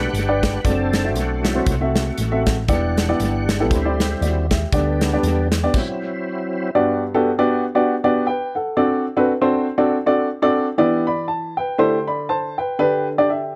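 A jubilant, uplifting uptempo gospel excerpt in G major at 119 BPM with a swung 4/4 feel opens with a gritty, overdriven tonewheel organ soloing in thick sustained chords through a slow rotary speaker and chorus vibrato, over a woody, mellow upright piano, a round, punchy hollow-body electric bass and an up-front acoustic drum kit with a tight kick and tape echo; the bass and drums drop out in a stop from 5.7 seconds, and the piano carries the lightly reverberant, echo-heavy mix alone from 6.7 to 13.6 seconds through a repeat of the Gmaj7, D7, Em7, D9sus4 and G/D progression.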